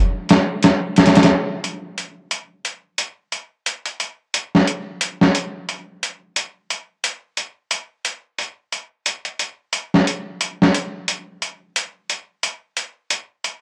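A swung 4/4 groove at 89 BPM drives this hypnotic, brooding trip hop fragment, cut from a longer piece. A dusty, sampler-style soul drum kit enters at 0.3 s and runs to the end at 13.6 s, its hi-hat and medium-tuned snare sitting up front, compressed and gritty with overdrive, as if re-recorded in a small room. A moderate plate reverb and the warbling pitch drift of worn cassette tape give the whole recording an aged, woozy haze.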